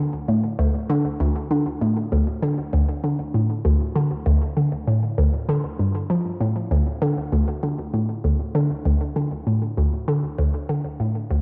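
This ambient piece in D minor moves at 98 BPM in a straight 4/4, with a mysterious, hypnotic mood. A single hollow square-wave pluck carries the whole fragment alone, sitting low between D2 and F3. Its bouncy tone has a fast attack, short decay and filter pluck, with a noise layer woven into the sound. Chorus, phaser and tape echo color the pluck, which sits up front in a wet spring reverb with a long tail. The piece is a home recording on cassette, and the fragment, cut from a longer piece, fades out from 9.7 to 11.4 seconds.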